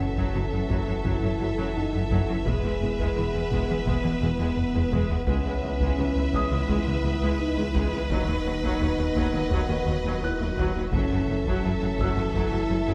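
A straight, steady 4/4 pulse drives this tense, relentless cue from a hybrid orchestral and electronic film score. Taiko drums struck with heavy sticks enter at 0.2 s, sitting in the background with a compressed, saturated punch, and a brief drum fill lands between 4.6 and 5.3 seconds. Lush bowed violins carry the melody over a second violin line, while distant violas add accompaniment, and dark French horns and roomy trombones hold sustained chords beneath them. The low end is layered from clear, vibrato-rich cellos and double basses, a deep sine-and-triangle sub bass with octave, and a round, very quiet analog bass riff with a filter pluck. High above, a felt-muted upright piano adds an intimate, vintage texture through digital delay. The harmony moves from F#m7 through E, C#m7 and B/D# before returning to F#m7, all placed in a moderate scoring stage reverb.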